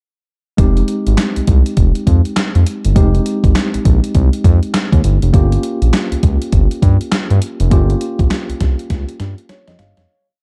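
Punchy and slick, this short new jack swing R&B piece in F minor rides a hard swing at 101 BPM, with all three parts entering at 0.6 seconds over a dark, dry production that moves from Fm7 to Gm7b5. Up front, a crisp, overdriven 8-bit drum machine with a thumpy kick, a snare layered with handclaps, and hi-hat, re-recorded in a large room, pairs with a smooth, saturated sawtooth-and-square synth bass whose bouncy, swung funk line carries vibrato and muted ghost notes. Further back, a clean tine electric piano heard through its built-in speakers holds rootless chords and adds short fills, and the piece fades out from 7.7 seconds, with a drum fill arriving at 8.9 seconds.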